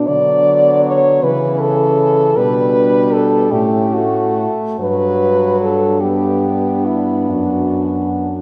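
A warm French horn carries the melody up front, played with light vibrato and a soft attack in a classical style. Around it, a lyrical horn quartet unfolds in a rubato 6/8, elegiac and yearning in mood. Two mellow horns sit beneath it, one shaping a second line in the background with the same soft attack and the other holding the bass, both touched with light vibrato. A clear-toned horn fills in the accompaniment from 0.1 to 8.3 seconds, as the harmony drifts from Bm/D through G/B and Gmaj7 to settle on Bm/F#. The melody, second line and bass horns are close-miked, and all four are bathed in a wet concert hall reverb that places the listener further back in the room. The passage is a brief fragment cut from a longer piece.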